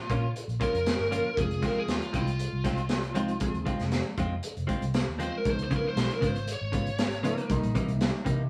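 A straight-eighth soul blues groove in 4/4 at 118 BPM drives this smoky, brooding excerpt in F minor, cut from a longer piece. A crunchy breakbeat drum kit sits up front with a punchy kick, medium-tuned snare and hi-hat, its saturated, rolled-off sound dark and gritty, while a vintage muted fingered electric bass adds a round, foam-muted low end. Over this, a lead guitar through a small cranked amp carries the overdriven, picked melody, and a barky, reedy electric piano fills in accompaniment with a fast tremolo and light overdrive through its built-in speakers. A bright, compressed clean electric guitar, recorded direct, punctuates the harmony with stabs as the chords move from Bbm to Fm, then Db7 and C7#9. At 7.2 seconds a growling tenor saxophone slips in quietly with a breathy, raspy subtone, scooped notes and vibrato. The band sounds as if it is playing live in one room, with moderate studio reverb.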